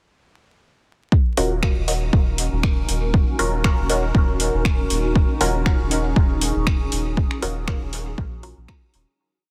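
An overdriven electronic kick drum sits up front, driving four-on-the-floor at 119 BPM with a light swing, in this cavernous, nocturnal dub techno piece in Eb minor, built on a single Ebm7 chord and beginning at 1.1 seconds. From 1.4 seconds, a round, soft sub bass plays a dotted rhythm, deep house drums add metallic hats and snaps, and two muted, phased chord stabs, one dark and one nasal set further back, move a single shape in parallel with dub echo, pumping under sidechain compression. A blurred granular pad with built-in reverb drifts in at 2.0 seconds, and the whole piece, heavily limited and dusted with vinyl crackle, fades out from 6.5 to 9.2 seconds.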